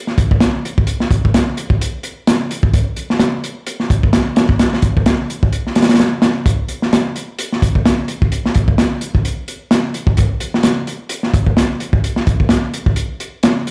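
Breakbeat at 129 BPM in 4/4, this funky, energetic clip is cut from a longer piece and leans on a 16th-note swing of 56%. A crunchy breakbeat drum kit carries the whole passage, entering at 0.1 seconds and running through to 13.7 seconds with hi-hat, kick drum and snare drum. The kit sounds acoustic and saturated, with a dark, gritty character, a rolled-off top, a tight kick and a medium-tuned snare. It sits up front in the mix, as if played through a big sound system in a bare room, with a moderate studio reverb giving it space.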